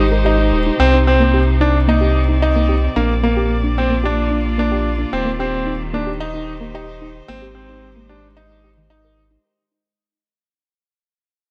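Luminous and hopeful, this piano and strings electronica excerpt at 111 BPM opens on a drop and fades out from 0.8 seconds, as a bright concert grand piano riff with audible action noise and long delayed sustain sits up front over sustained bowed chords from a smooth, vibrato-rich string quartet, while a soft, detuned pluck with chorus, cassette tape and digital delay ripples arpeggios in the background, a round, wave-folded analog bass anchors the low end, and a moderate recital hall reverb frames the Abmaj7, Cmadd9, Bb and Eb6 harmony.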